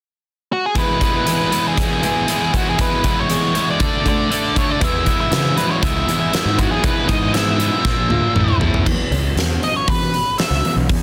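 A huge, up-front arena drum kit with a fat snare and punchy kick drives this restless, bittersweet stretch of quiet-loud alternative rock, cut from a longer piece. A dark octave-fuzz lead guitar carries the melody over a thick fuzz guitar riff and slightly broken-up arpeggios from an electric guitar through a small old amp, set in the background with lush chorus. A punchy overdriven fuzz bass joins at 4.8 seconds, and a drum fill from 7.9 seconds leads into a new section at 8.9 seconds, all in a dense, heavily limited modern master with light reverb.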